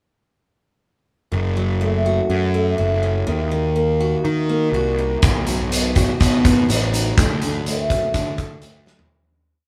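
A band playing live in one large studio room, with moderate reverb, opens this brief, brooding quiet-loud alternative rock piece in F# minor at 123 BPM. Woody, old-stringed dreadnought acoustic guitar arpeggios and an up-front, overdriven fuzz bass playing simple root and fifth lines move through F#m, D#m, B and D, and a big, mid-forward rock drum kit with a tight kick and rolled-off top joins at 5.2 seconds. The cathartic groove fades out from 7.2 seconds, with a drum fill landing at 8.9.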